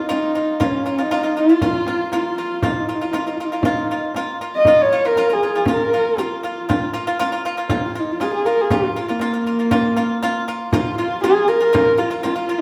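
Mongolian traditional folk music in a solemn, windswept mood, moving at 119 BPM in a straight 4/4 and set in the Bb yu mode, cut from a longer piece. A single dark horsehead fiddle carries the melody up front, its bowed horsehair strings giving a husky, woody tone shaped by vibrato and portamento. Beneath it, a pipa played with fingerpicks adds bright, percussive arpeggios with a dry, acoustic character. A small frame drum played with soft hands keeps time, its sound bright with a small-room quality. The band plays live together in one room, and a wet stone room reverb surrounds the whole, with a shift into a new section at 10.7 seconds before the recording ends at 12.6 seconds.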